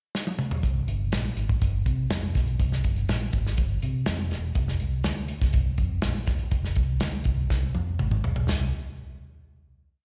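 Heard through a live venue's PA with light recital-hall reverb, this short, complete uptempo 1960s-style soul piece at 122 BPM feels urgent and passionate: an up-front acoustic drum kit with dark cymbals, a tight kick and a medium-tuned snare drives a backbeat groove, opening with a fill at 0.1 seconds and adding another at 7.5 seconds, while a round, punchy, foam-muted electric bass plays a melodic, syncopated line with chromatic approach notes before the piece lands on a final note at 8.5 seconds.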